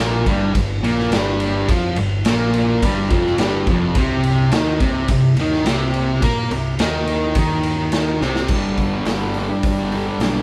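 The sound is of a band playing live in one room, with a moderate large studio reverb around the parts in this rowdy, raw garage rock cut from a longer piece. A double-tracked fuzz guitar sits up front with a bright, compressed, distorted riff over a straight 4/4 feel, the harmony moving from Fsus24 to Cm7. Beneath it, a picked electric bass adds a growly, direct tone in the low register. The acoustic drum kit enters at 0.3 seconds, up front, gritty and saturated, with a punchy kick, a medium-tuned snare, hi-hat, ride and crash in a pumping stone room with a rolled-off top. A drum fill at 8.2 seconds leads into a new section at 8.5 seconds, where the chord shifts to G.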